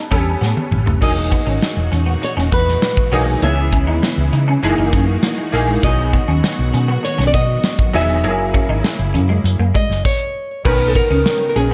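Polished 1980s jazz-funk pop with a glossy, breezy mood, moving at 100 BPM in a straight 4/4 feel in B major, cut from a longer piece. A fingerpicked flamenco guitar carries the melody from the start, set over bright, brilliant grand piano chords with short sustain and a clean, picked semi-hollow electric guitar riff, both touched with ensemble chorus. A round, punchy hollow-body fingered bass and an airy, up-front acoustic drum kit with bright cymbals, a tight kick and gated reverb come in almost at once, and a drum fill leads into the full groove. Lush, bowed strings with smooth vibrato sit in the background from 1.0 seconds, filling out the harmony. The chords move through rich extended colors such as Emaj9#11, C#m7 and F#13, and after a stop at 10.1 seconds the passage settles on Bmaj9, all in a polished studio space with light reverb.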